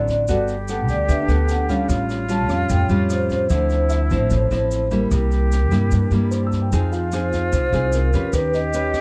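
The recording is dry, with little reverb, and holds a wistful, intimate bossa nova passage cut from a longer piece, moving at 149 BPM in a straight 4/4. Soft-mallet vibraphone carries the melody between Bb4 and A5, its ringing, metallic, mellow tone shimmering with a fast motor vibrato. Beneath it, an airy, distant flute traces a low second line, tongued and touched with vibrato. Up front, a fingerpicked nylon-string guitar in classical style supplies accompaniment, and a woody pizzicato upright bass with steel strings sits just as near. A roomy, far-off brush kit with a boomy kick, rim click and high-tuned snare plays throughout alongside a grainy, bright, band-limited vintage tube shaker, while a very quiet grand piano adds accompaniment from 1.1 to 8.4 seconds. The harmony moves from Gmaj9 through Aaug7, Dm9 and C7 before a new section at 6.7 seconds brings Fm7 and Eb7b13.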